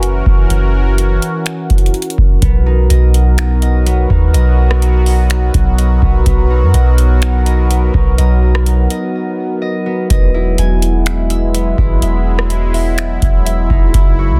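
A soft, round 808-style bass sits up front in this dreamy, blissful cloud-rap hip hop excerpt, joined by a booming analog drum machine with a deep kick, metallic hi-hats, finger snaps and rim clicks in a half-time feel, while a bright, detuned sawtooth pad with chorus, phaser and sidechain pumping sustains chords moving from F#7 to Bmaj7 and Emaj7, a ringing concert harp with delay adds arpeggios from 2.4 seconds, and a break arrives at 9.1 seconds within the dense, heavily limited master.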